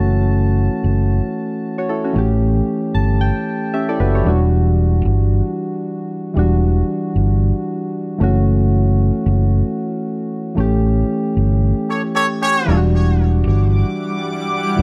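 A mellow, hypnotic afrobeats groove at 114 BPM in 4/4 swings its sixteenths over E dorian, with a dark, round fingered electric bass up front and soft, full-bodied electric-piano-like synth keys with chorus carrying the chords throughout, adding a fill from 2.7 to 4.3 seconds. During a band accent, a clear, punchy horn section with light vibrato and digital delay cuts in briefly at 11.9 seconds. A cloudy, evolving granular pad with built-in reverb rises at 13.5 seconds as this fragment of a longer piece settles onto Em9.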